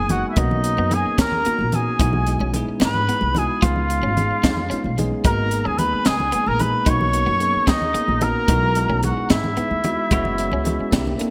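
Intense and nocturnal, this electric jazz fusion excerpt moves at 74 BPM in 6/8, with a veiled cup-muted trumpet carrying the melody up front over a reedy silver flute second line touched with delay, bell-like tine electric piano chords that break into a fill at 4.4 seconds, woody pizzicato upright bass, a punchy fusion drum kit with a high-tuned snare and gated reverb, damped congas in the background, and a clean chorused electric guitar adding picked stabs from 0.4 seconds, the whole mix set in small room ambience with bright 1980s-style digital production over changes such as Bmaj9, Emaj7/B and C#7.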